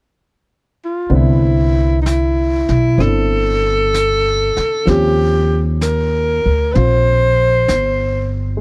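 A breathy alto saxophone opens alone at 0.8 seconds, its subtone voice and light vibrato carrying the melody up front in a late-night, romantic jazz ballad in C major. At 1.1 seconds the rest of the band enters: a baby grand piano accompanying softly in the background, a woody, thumpy pizzicato upright bass sitting up front, and a vintage brush kit on snare and hi-hat, its rolled-off top keeping it well behind the others. The tempo is a slow 64 BPM in 4/4 with a gentle swing on the eighth notes, and the harmony moves from Cmaj9 to Eb13 at 4.9 seconds. The sound is dry and close, with little reverb, in the manner of a 1970s studio recording. This brief passage is cut from a longer piece.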